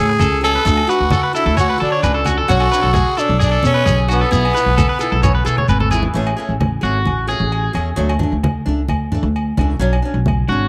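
A raspy, growling tenor saxophone leads this danceable highlife guitar-band excerpt over a boxy picked archtop guitar, a twangy, slightly broken-up electric guitar with tape echo playing arpeggios, a woody, up-front pizzicato upright bass, thick-skinned low congas, grainy shekere and ringing agogo bells in the background, all in a small room with light reverb, until the saxophone drops out near 5.7 seconds and a fill at 5.6 seconds leads into a clean electric guitar solo from 6.2 seconds.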